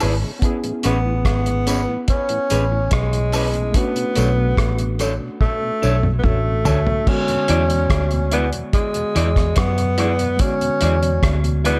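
Lovers rock reggae in a tender, smooth mood, this short cut from a longer piece moves in an unhurried 4/4 over chords of Amaj9, Bm9 and E7. A breathy alto saxophone carries the melody from 0.9 seconds, up front with subtone, vibrato and scooped notes in a jazz style, trailed by tape echo. Underneath, a foam-muted, round fingered electric bass sits prominently beside a cloth-damped, thuddy drum kit with a tight kick, dark cymbals and rim clicks, treated with gated reverb and dub echo, and a drum fill runs from 5.4 to 7.1 seconds. An electric guitar through a small old amp adds slightly broken-up, lo-fi stabs, while a worn, slightly out-of-tune tine electric piano plays in the background, both touched by dub echo. A very quiet, lightly overdriven tonewheel organ with slow rotary speaker fills in the harmony, and tambourine and woodblock with maracas and group handclaps add a live-room feel until 6.9 seconds.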